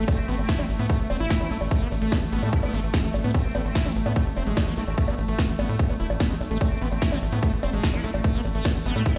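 An overdriven, punchy electronic kick sits up front in this psychedelic, alien trance excerpt at 147 BPM in A harmonic minor, joined by a tight, driving sawtooth sequencer bass and a squelchy, resonant acid bass riff with chorus, delay and sidechain pumping. A big-room dance kit of crisp hats, snare and bongos plays along, while in the background sit a grainy tube shaker, a nasal vowel-sweep wobble bass with 12-bit sampler grit and tape echo, and an evolving, detuned wavetable pad holding sustained chords around A3. A barely audible downlifter and reverse cymbal mark the first and last instants, and the track sounds as if played on a big sound system in a bare room with large studio reverb.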